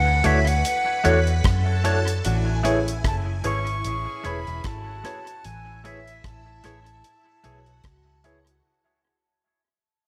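Smooth and romantic, this lovers rock reggae passage, cut from a longer piece and fading out throughout, sets a breathy, close-miked flute melody with tape echo over a dark, round, foam-muted fingered bass up front and a dry reggae kit of tight kick, hi-hat and rim click. A twangy, clean electric guitar adds compressed stabs, an FM electric piano warbles with tremolo and phaser, and a swirling, bright string machine holds a second line. From 2.2 to 5.2 seconds a clear saxophone section joins in the background as the harmony moves from Dmaj7 to Amaj7, all under a light reverb.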